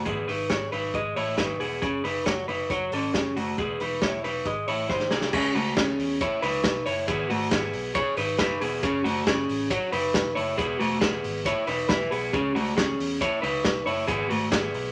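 A moderate studio reverb surrounds this recording, with the guitar and the muffled, lo-fi drums sitting up front. It is a wistful, restless slice of jangly indie pop in C# minor, moving at 137 BPM in a straight 4/4. An electric guitar through a small old amp carries the arpeggios, its picked tone dark and slightly broken-up, while a vintage foam-muted electric bass plays round, punchy low notes underneath. The vintage acoustic kit, recorded in a small room, has a tight kick, a medium-tuned snare, hi-hat, and dark crash and ride cymbals with a rolled-off top. The harmony starts with G#m, F#madd9 and E before landing on G#. A drum fill at 4.9 s leads into a second section at 5.3 s that opens on C#m and lingers on Eadd9 before the excerpt cuts off on F#madd9.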